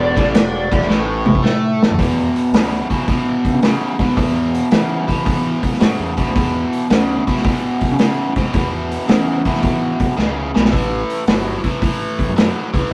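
A rough rehearsal-room recording with a wet booth ambience catches this gritty, raunchy blues rock and southern rock excerpt with a swung feel, as a dark overdriven slide guitar flashes a brief melody over an E5 chord before stopping at 0.9 seconds, a drum fill arrives, and the biting, double-tracked overdriven guitar riff drives on with a growling, punchy fingered bass and a dark, smooth vintage drum kit with tight kick and rolled-off top, another fill at 10.2 seconds leading into an A7 chord with its third omitted.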